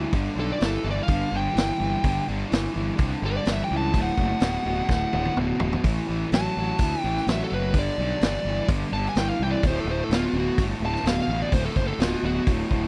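A straight, driving 4/4 groove at 126 BPM anchors this gritty slice of blues rock and southern rock in D mixolydian, cut from a longer piece. A vintage drum kit sits up front with a tight kick, a medium-tuned snare, hi-hat and toms, its saturated, rolled-off sound giving the beat a mid-forward punch, and a drum fill breaks in from 4.9 to 5.8 seconds. Beneath it, a fingered electric bass with fuzz and overdrive holds the low end in a dark, round tone, while a picked, double-tracked overdriven electric guitar pounds out the riff through G5, D, A5, G5 and D5 chords. From 0.4 seconds a fuzz lead guitar takes the solo high above, its picked, distorted line carrying a slapback echo and a warm edge. The dry, close recording has a 1970s studio character, keeping the power-trio attack raw and immediate.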